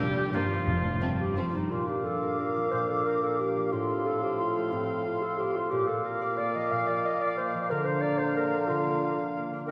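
An up-front, warm clarinet carries this elegant, sweeping orchestral ballroom waltz in Bb major. It enters at 1.2 s and sings its second line through to the end of the passage at 9.7 s. The waltz moves at 180 BPM in 3/4 with uneven beats and a flexible rubato feel, all slightly below standard pitch. In the brief opening, a very quiet, intimate violin section plays sul tasto on the melody. A focused, smooth-topped second violin section, a viola section with a soft attack and portamento, and an even cello section all sit in the background, joined briefly by a double bass section and very quiet calf-headed timpani on medium mallets. From the start, a clear, distant oboe and a ringing, fingerpicked concert harp weave second-line phrases and arpeggios over the chords. At 1.7 s a pure, hollow flute and a present, lightly vibrating bassoon join them. The whole ensemble is bathed in a wet church reverb, and the piece is cut from a longer work.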